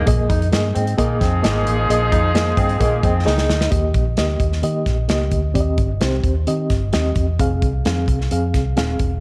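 A straight 4/4 groove from an airy, up-front country drum kit with a punchy kick and a dark, round, foam-muted fingered bass drives this uplifting, joyful uptempo 1960s-style soul excerpt, where a clear, jazz-style horn section with light vibrato plays a second line until about 3.5 seconds and a bright, twangy, slightly broken-up guitar picks a riff until a drum fill ends near 3.7 seconds. Throughout, the reedy, worn, slightly out-of-tune electric piano with fast tremolo carries the accompaniment as the harmony moves from Bb7sus4 through Eb, Cm and Fm in a lightly reverberant studio room.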